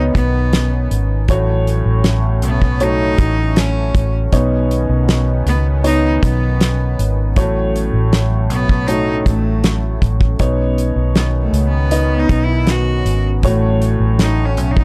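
A bright, biting, intense bowed cello with vibrato and analog delay carries the longing melody of this emotional pop ballad in F# dorian at 79 BPM, set over a present, long-sustaining baby grand piano, an airy, detuned sawtooth pad with chorus in the background, a dark, round, foam-muted electric bass up front, and a damped 70s drum kit with a fat snare and tight kick that enters at 0.1 seconds, all in a dry, gritty recording that alternates between Badd9 and F#m/A.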